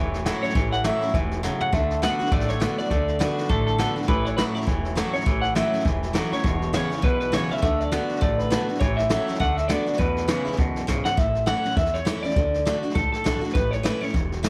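Rockabilly with a rowdy, rollicking swing, cut from a longer piece: a slightly broken-up, lo-fi electric guitar with tape echo carries the melody up front over a full-bodied picked acoustic guitar, a clean twangy electric riff that stops at 11.2 seconds, a woody, thumpy pizzicato upright bass, and a brushed drum kit with a boomy kick that plays fills at 1.4 and 10.9 seconds, all set in a small room with light reverb.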